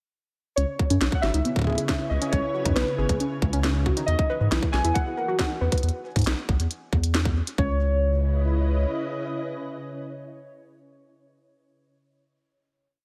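A broken, ever-changing beat of tight, overdriven electronic kick and glitchy drums with a tiny snare and clicky hats drives this cerebral, melancholic IDM piece at 137 BPM in C# minor, as a round, deep analog bass plays a syncopated riff, a dusty, detuned pluck loops a 12-step arpeggio that drifts against the bar, warbling lo-fi synth keys wander through a free melody with slapback and tape echo, and a silky string machine holds slowly shifting chords before the groove gives way at 7.6 s to a final chord that rings out in a moderate recital-hall reverb with a big, arena-like sound.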